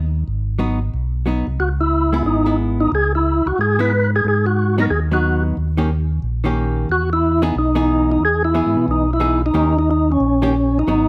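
A swinging 181 BPM groove in 4/4 sets this bluesy, smoky soul jazz organ trio excerpt in G# minor, where a mellow, round tonewheel organ lays down the bass line from the start, a dark, clean, hollow-body archtop guitar comps from 0.6 seconds, and a fat, percussive tonewheel organ with key click and slow rotary sway takes the melody from 1.6 seconds over changes moving from G#m7 through C#m7, D#7 and Emaj7 in light reverb.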